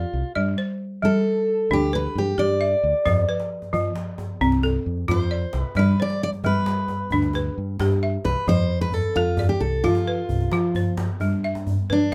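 Set in a flowing 12/8 at 89 BPM, this hypnotic West African string and xylophone piece in F lydian features a full-bodied, fresh-stringed steel-string acoustic guitar carrying an up-front picked melody that stands out as a solo through 8.5 seconds, woven over buzzing, woody balafon arpeggios and a round, direct fingered electric bass, with a deep, distant djembe with metal rattles joining at 3.1 seconds as the harmony sways between G and F in a small room.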